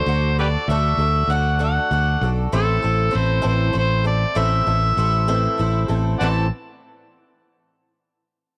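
In a small-room sound, this dusty, reflective folk-rock and heartland-rock excerpt in A dorian unfolds at 65 BPM in 6/8, with an up-front, gritty, overdriven harmonica singing the melody in scooped notes, light vibrato and tongue slaps over a boxy, shimmering, octave-doubled twelve-string acoustic guitar with audible finger squeak, while a direct fingered electric bass joins at 0.1 seconds as the chords move from D to Am at 2.5 seconds.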